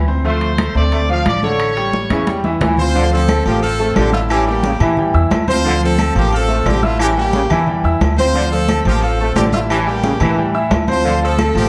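A tight trombone section and a thumpy, woody pizzicato upright bass open this driving, danceable salsa excerpt, joined at once by a bright grand piano, damped high-tuned congas, ringing metal-shell timbales and agogo bells, and very quiet, distant claves, while a punchy trumpet section carries the melody until 2.4 seconds and, during a drum fill, a brilliant, close-miked horn section takes over the melody from 2.8 seconds, set in a wet large-studio reverb heard from further back in the room.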